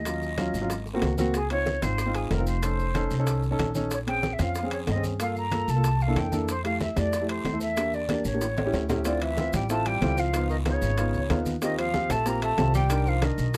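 A woody, thumpy upright bass sits up front in this sunny, sophisticated Afro-Cuban jazz excerpt, its plucked steel strings anchoring the low end throughout. Above it a breathy concert flute carries the melody with a straight tone and crisp attack, heard from a distance and a little unsteady. The grand piano has a smooth, vintage character with short sustain and accompanies from the front of the mix. It moves through rich extended harmony such as Dbmaj9, F7b13 and C13. The percussion bed combines ringing, low-tuned congas struck with hard hands, metal-shelled timbales, tight, high-tuned bongos played softly and very quietly, a raspy guiro and grainy, mellow, saturated maracas, with congas, guiro and maracas set in the background. A drum fill beginning at 8.4 seconds and a piano fill lead into a new section at 9.1 seconds, where a breathy tenor saxophone joins with a second line of vibrato and scooped notes in a soft-attacked jazz style. 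The close, detailed recording carries little reverb.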